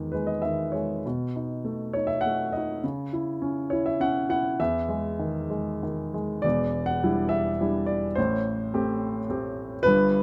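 A warm baby grand piano opens alone, playing a lyrical classical piece in 3/4 with a free, rubato feel that drifts between about 93 and 109 BPM. The mood is warm and hopeful, built on E major harmony that moves through Emaj7, B7 and C#m before turning to E minor at 6.4 seconds, where Em7 and Am7 follow. The piano spans a generous range, from a deep E1 up to F#5, and its tone is natural, with a short sustain that keeps each chord clear. Close, detailed microphones place the instrument up front in a dry room with little reverb, so every note sounds intimate and present. This short passage, cut from a longer piece, ends at 10.2 seconds during its E minor turn.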